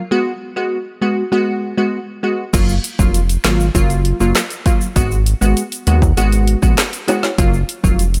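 Dancehall with a sunny, summery mood, cut from a longer piece and set in a straight four-beat groove. A crisp, detuned wavetable chord stab opens alone, its mellow, decaying hits shaped by a filter sweep as the harmony moves between G#m7 and F#maj7. At 2.5 seconds the rest of the band arrives together: a round analog bass with a dark, wave-folded tone and a quick filter pluck, and a layered deep house drum kit with a deep kick, woody snare, dark hi-hats, handclaps, rim clicks and a crash cymbal. Sitting lower in the mix, a close, ringing tube shaker and timbales add acoustic texture around the electronic beat. The bass and drums sit up front alongside the chords, and light reverb lends a gentle sense of space until the parts stop near 8.2 seconds.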